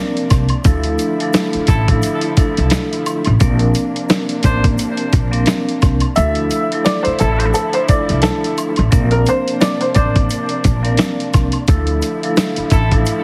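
A swung boom-bap hip-hop groove at 87 BPM in 4/4 sets a reflective, moody tone in D minor, cut from a longer piece. The gritty, compressed sampler-style drum kit sits up front with a thumpy kick and medium-tuned snare over hi-hat, while a woody pizzicato upright bass anchors the low end and a tube shaker and woodblock tick along in the background. A ringing, metallic vibraphone with medium hard mallets and slow motor vibrato carries the accompaniment throughout, beneath dark, lush bowed strings playing sul tasto sustained chords that move between Bbadd9 and Dmadd9. A mellow, vintage trumpet section adds delayed stabs from 1.7 seconds, and a boxy upright piano takes the melody from 6.2 to 11.1 seconds, also treated with digital delay, while the kick drops out from 6.2 to 7.5 seconds. The whole mix carries a heavily compressed radio sound with vinyl crackle, light reverb and small room ambience.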